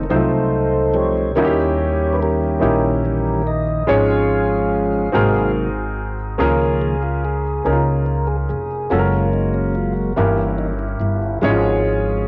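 A clear, worn concert grand piano, a mellow tonewheel organ and a pizzicato upright bass start together in this jubilant, soulful gospel excerpt in Db major, swaying in 6/8 at 48 beats per minute with a home-cassette sound, light reverb and small-room ambience. The dark, round organ carries the solo throughout, its slow rotary speaker, light overdrive and key click sitting up front over the piano's deep, short-sustained chords. The woody, growly bass anchors a harmony that moves from F7 and Eb7b9 into a new section at 6.4 seconds, passing through Gbmaj7 and Gdim7 before settling on Db/Ab.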